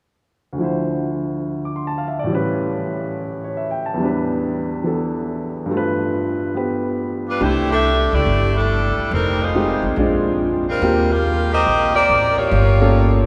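A clear saxophone section carries the melody from 7.3 seconds, tight and jazz-styled with a light vibrato, sounding both up front and distant in a roomy space. This is energetic, joyful big band swing in C major at 141 BPM in 4/4, with a 68% swing feel on the eighth notes. A warm baby grand piano opens the excerpt alone at 0.5 seconds, laying down accompaniment over chords such as Dm7, A7, Em7 and G7. At 7.4 seconds a woody, pizzicato upright bass with steel strings joins low in the range, as the harmony moves through C69, Fm7, Bb9 and Eb69 before reaching Gm7b5. The whole recording sits in a wet cathedral reverb with a decay of 5.9 seconds, giving the sound of a church or concert hall, and it is cut from a longer piece.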